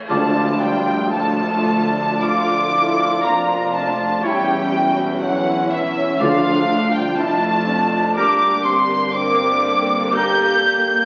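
A slow, lyrical romantic movement for symphony orchestra in D minor opens with the full ensemble sounding together at 0.1 seconds, marked by a band accent in its first second while a very quiet, close and dry tam-tam and timpani on D3, struck with medium mallets, mark the start. The warm symphonic violin section carries the melody high above, its sul tasto tone soft-attacked, pure and floating, doubled in the same register by a very quiet, dark studio violin section with woody vibrato and by a large flute ensemble whose airy, crisp sound sits in the background. Beneath them a distant, roomy oboe and a clear, very quiet clarinet add second lines, while a dark viola section and a mellow, close-miked bassoon fill in the accompaniment. Mellow French horns and a tight trombone section hold sustained chords, and a rich cello section and soft-attacked double basses anchor the bass as the harmony moves from Dm through C#dim/E back to Dm and on to Gm, at a rubato 60 BPM in 4/4. 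The tam-tam falls away at 4.2 seconds and the timpani at 7.6 seconds, leaving the strings, winds and brass to carry the tender, unhurried phrase. Everything is heard through the crackle of a very old 78 rpm record, with a recital hall reverb giving the orchestra a soft glow, and the passage is cut from a longer piece.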